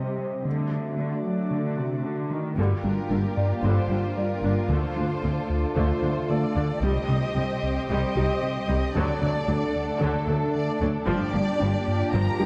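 A breathy, airy pad with chorus and a distant, dark French horn section open this brooding, tense excerpt of a hybrid orchestral and electronic film score in G minor at 113 BPM, joined by a close cello section on the bass, a very quiet intimate grand piano with audible action noise, and a tight, detuned sequenced synth arpeggio from 0.2 seconds. At 2.6 seconds the lush bowed strings arrive, with an expressive violin melody over a second violin line and an intense viola accompaniment, while a smooth ring-modulated synth bass riff and the double bass section deepen the low end. The whole sits in a moderate concert hall reverb as the harmony moves from D to Gm7, through Dm7, Cm and D, and back to Gm7.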